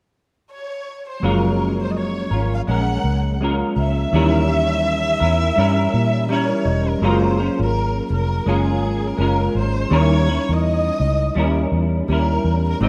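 Light reverb and a digital ambience hang over this rough home-demo mix, a lonely, mellow slice of indie and bedroom pop cut from a longer piece. A lone erhu carries the melody from 0.5 seconds, its bowing airy and intimate with a soft attack, light vibrato and gliding portamento, softened further by ensemble chorus and a slapback echo. At 1.2 seconds the band arrives at 83 BPM in 4/4 with a lazy 16th-note swing. A clean, hollow-bodied semi-hollow electric guitar, fingered and up front under chorus and a vibrato effect, joins a dark, round, foam-muted electric bass. A tine electric piano sits in the background through its built-in speakers and contributes a fill at 5.9 seconds, as the harmony rocks between Gbmaj9 and Eb7b9.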